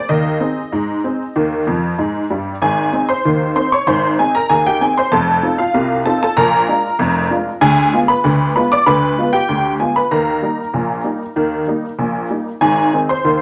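A detuned, jangly honky-tonk upright piano opens this cheerful, jaunty ragtime passage, playing solo from start to finish across a span from F1 to D6. The tempo sits at 96 BPM in a straight 2/4, in Ab major with the tuning set slightly low at A4 = 438 Hz. A short opening section ends with a piano fill from 1.7 to 2.6 seconds, and the longer second section begins at 2.6 seconds and moves through F7, Bb7 and Ddim7 before settling back through Eb to Ab. The piano sits up front with a vintage character, placed in a moderate studio reverb that gives it a touch of room. The passage is cut from a longer piece and stops at 13.4 seconds.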